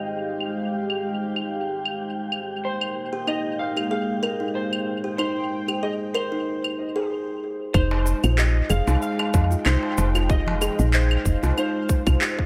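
Organic downtempo with a mystical, meditative air, opening on a detuned analog pad and a breathy, wind-like tuned noise texture over overdriven electronic claves, cabasa and handclaps steeped in dub echo, joined by a slightly broken-up electric slide guitar melody at 2.6 s and hollow, mellow kalimba arpeggios at 3.1 s, before a brief stop gives way at 7.7 s to an up-front woody FM bass and a tight overdriven electronic kick, with a crisp, distant darbuka following at 7.9 s in an echo-heavy mix.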